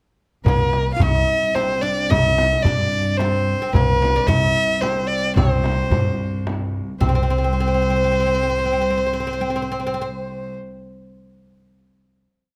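Arabic maqam ensemble piece in triple metre with a stately, passionate mood, led by a rich, focused bowed violin up front playing an ornamented modal melody, with a woody, plectrum-plucked fretless oud playing the same line with its own ornaments. Beneath them a clear cello holds a smooth drone, and a growly pizzicato upright bass sits on the low drum strokes. A deep clay-shell darbuka and a small, bright, distant frame drum play low and high stroke patterns in the background until 7.3 s, while the ensemble settles onto a final note from 7.0 s in light reverb.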